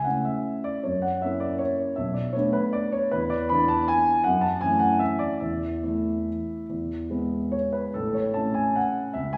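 A rubato 3/4 waltz between 137 and 171 BPM carries this graceful, playful classical fragment in A major, where a solo baby grand piano, open and up front with long sustain across a range from A1 to B5, moves through F#7, Bm7, E7, F#m7 and an Esus4 that settles onto E before returning home to A at 8.0 seconds, all bathed in a lush hall-like reverb that lingers for 1.4 seconds.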